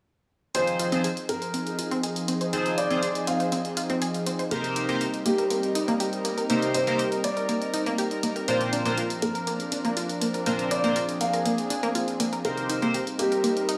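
Progressive house at 121 BPM in a straight 4/4, this expansive, emotional passage is cut from a longer piece and moves through Fm7, Cm7 and Bbadd9 chords. A dark, boxy baby grand piano carries the melody from 0.5 seconds, its short-sustain notes trailed by tape echo. Alongside it, an analog pluck spins detuned sawtooth and pulse-wave arpeggios with a fast attack and bright, decaying tone, thickened by chorus and tape echo. A retro, glossy polysynth adds chorused stabs with pulse-width modulation, ring modulation and filter sweeps, while a lush unison pad enters at 1.2 seconds with thick, slow-attack sustained chords. An electronic hi-hat, layered and re-recorded in a small room, keeps time under light reverb and digital ambience.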